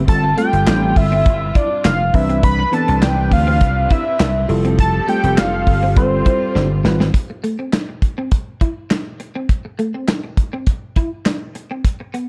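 Danceable and feel-good, this early-eighties boogie funk cut from a longer piece moves at 102 BPM in a straight 4/4, with a dark production and little reverb, as an up-front slap bass, a fat detuned analog lead treated with chorus and slapback echo, a mellow tine electric piano, lush bowed strings in the background and a bright, twangy clean guitar riff with ensemble chorus ride over chords such as G9sus4, Cmaj9 and Fmaj9. A tight, rolled-off drum kit with handclaps, hi-hat, kick and a medium-tuned snare drives the groove and plays a fill from 6.6 to 7.1 seconds. At 7.1 seconds the strings, bass and electric piano stop, leaving the guitar and drums to carry the Amadd11 passage, which shifts to a new chord at 11.6 seconds, until 12.3 seconds.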